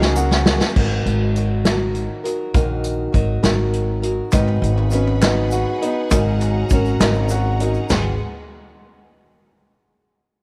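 Bittersweet and stirring, this short indie folk passage in a straight 6/8 opens on a drum fill from the unplugged kit, whose punchy kick, dark cymbals and bundle-stick strokes sit up front in a roomy, rolled-off sound. A felt-muted upright piano, soft and intimate, is heard only in the first 0.8 seconds. A woody, boxy archtop guitar with old strings picks its accompaniment throughout, anchored by a thumpy pizzicato upright bass. At 4.3 seconds the arrangement builds: a dark, slightly detuned upright piano returns with mellow arpeggios, a distant string section adds lush, biting sustained chords with vibrato, crisp group handclaps come back very quietly, and a grainy egg shaker rustles in the background. Light reverb and small room ambience frame the chords as they move from a minor colour toward an add9 sonority over a steady low pedal.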